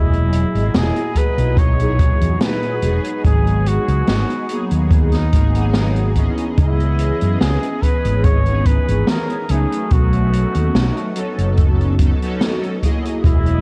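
A slow 72 BPM pulse in 4/4, with a slight swing on the sixteenths, carries this melancholic, hazy vaporwave excerpt cut from a longer piece. An open jazz drum kit enters at 0.1 seconds with hi-hat and a high-tuned snare wrapped in gated reverb, and a natural, boomy kick joins at 1.2 seconds. Beneath it, a dark, round fretless electric bass sits up front in the low register. Mellow synth brass, detuned and evolving with a filter sweep, fills the accompaniment through phaser, ensemble chorus and analog delay, while a very quiet, warbling tape-like pad holds sustained chords with a slow attack and long release. Over this, a clear flugelhorn plays a solo melody in a classical style, roughened by vintage 12-bit sampler grit and tape echo. The harmony moves from Emaj9#11 through G#m9 and C#m9 to B9, and the whole recording carries a cassette tape character in a studio reverb.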